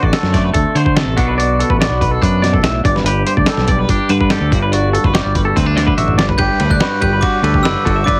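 Math rock and midwest emo in G major at 144 BPM, bright and wistful, where two clean, twangy electric guitars, one fingered accompaniment bathed in spring reverb and one picked line of arpeggios, move over D7, Bm7, Gadd9 and Gmaj7, a growling overdriven fingered bass sits beneath, a muffled, pitched-down lo-fi sampler kit with a thumpy kick pushes up front and drops a fill at 6.0 seconds, and a ringing, bell-like glockenspiel struck with brass mallets enters on the melody at 6.4 seconds, all in a dry, heavily compressed radio-style mix cut from a longer piece.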